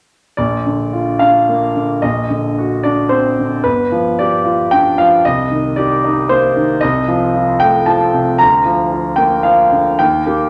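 A large, wet studio reverb with a 1.2-second decay surrounds a concert grand piano heard up front, its tone natural and warm with a deep bass. This passionate romantic character piece for solo piano moves in a rubato 3/4, tuned to A4 = 435 Hz. The harmony travels from Bb through D7/Bb, G7, Cm7 and F7/C before arriving on Bb/D at 8.4 seconds, in a fragment cut from a longer work that ends at 10.5 seconds.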